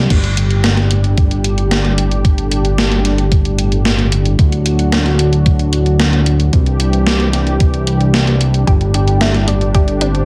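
A straight 4/4 pulse at 112 BPM drives this romantic, nostalgic synthwave excerpt, where a thumpy electronic kick and an up-front 80s drum machine of gated-reverb snare, hi-hat and crash cymbal sit over a fat, saturated analog bass and a smooth, detuned analog pad that both pump against the sidechain through Gsus2, D and Cadd9, while a round, nasal analog pluck with chorus and digital delay returns with background arpeggios at 8.7 seconds and a dark, velvety synth lead with tremolo and 12-bit sampler grit enters at 8.9 seconds, all bathed in digital ambience.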